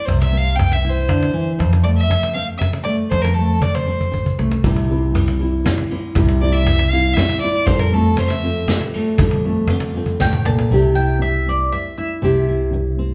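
Pastoral and hopeful, this short acoustic folk piece moves at 118 BPM in a straight 3/4, set in F major and cut from a longer performance. A warm, focused fiddle carries the melody up front with light vibrato and a smooth top, taking a solo over full-bodied fingerpicked nylon-string guitar, woody pizzicato upright bass and a snappy, compressed cajon struck with hard hands. At 4.6 seconds a soft, boxy felt-muted upright piano joins with dark, mellow arpeggios, along with a vintage brush kit of kick, ride and snare that has dark cymbals and a rolled-off top. Brief drum fills mark the turns of the phrase, and the chords move between C, F and Fadd9. From 10.7 seconds a bright, double-strung bowl-back mandolin takes the solo over the guitar and bass. The band sounds as if it is playing live in one room, bathed in a lush studio reverb.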